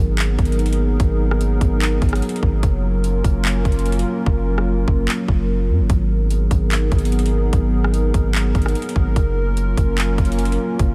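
Riding a half-time trap pulse at 147 BPM in 4/4, this blissful, floating cloud-rap excerpt in F# major sets an electronic kit of hard-clipped kick, handclaps, rim click and metallic hi-hats, which drop out from 4.3 to 5.9 seconds, over a deep, mellow sine 808 bass and a dark, detuned, wave-folded analog pad with chorus and sidechain pumping, cycling G#m9 to F#maj7 in a dry, up-front mix, with a barely audible impact at the start.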